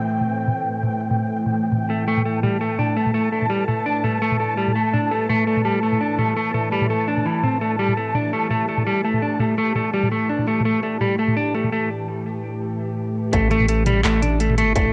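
Half-time drum and bass at 168 BPM in A minor, this spacious, heavy excerpt opens with a tense, string-like drone holding sustained chords under built-in reverb and sidechain pumping, while a grainy, flickering texture hovers high above until 11.9 seconds. An industrial drum kit of handclaps, hi-hat and toms runs through the passage with a slight swing, its smooth hats, toms and snare low-pass filtered and colored by cassette tape, as if re-recorded in a large room. From 1.9 seconds a dark, clean electric guitar plays fingered arpeggios up front, roughened by vintage 12-bit sampler grit and an analog delay. After a brief break, the drop at 13.3 seconds brings in a deep, thick saturated sub bass and a distorted electronic kick with tape coloring. The whole recording has a light reverb and the lo-fi character of a home cassette recording.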